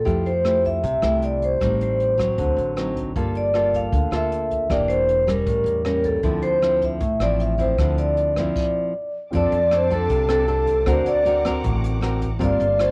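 Up-front, ringing vibraphone carries the melody of this smooth, melancholic bossa nova excerpt at 156 BPM in D minor, over full-bodied fingerpicked nylon-string guitar with finger squeak, woody pizzicato upright bass and a small-room brush kit with dark cymbals and a punchy kick, the vibraphone, guitar and drums coloured by cassette tape; after a stop at 8.6 s the music moves to F major at 9.3 s, where a breathy, very quiet flute ensemble adds a second line, a mellow grand piano sits in the background and a lush bowed violin section holds sustained chords, the whole home cassette recording set in light studio reverb.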